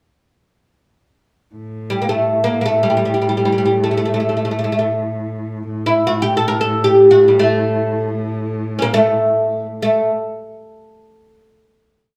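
Recorded live in one room and bathed in the generous reverb of a large studio, this short, passionate Turkish makam piece sets a rich, focused bowed cello drone with vibrato entering at 1.5 s beneath an up-front, woody, mellow fretless oud that joins at 1.9 s, plucked with a plectrum on its double strings to spin an ornamented modal melody in free time before settling on a final note at 9.8 s.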